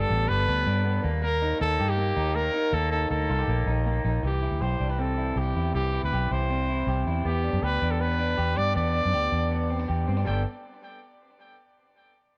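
A breezy, nostalgic slice of jangly indie pop cut from a longer piece, where a clear, vintage-toned trumpet sings the melody with vibrato and a touch of delay over slightly broken-up, lo-fi guitar arpeggios from a small old amp and a dark, round, foam-muted fingered electric bass, all three up front in a light reverb as the chords move from Gadd9 through Eb, C and Em7 before returning to Gadd9 at 10.3 seconds.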